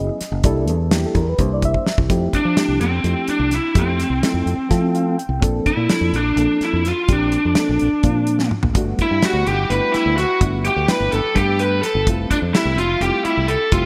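A straight 7/8 groove at 253 BPM in eighths sets up this bright, soaring electric jazz fusion excerpt in F major, with a damped 70s drum kit (fat snare, tight kick) and a growly, punchy fingered bass up front beneath a reedy electric piano treated with analog chorus, which moves from a C13 chord through Fmaj9, Bbmaj9 and Gmaj9. A biting, overdriven lead guitar takes the melody from 2.3 s, and at 9.0 s a brighter overdriven second guitar with spring reverb and digital delay joins it. Drum fills and an electric piano fill mark the phrases, all set in a lush hall reverb with a bright 1980s-style digital sheen.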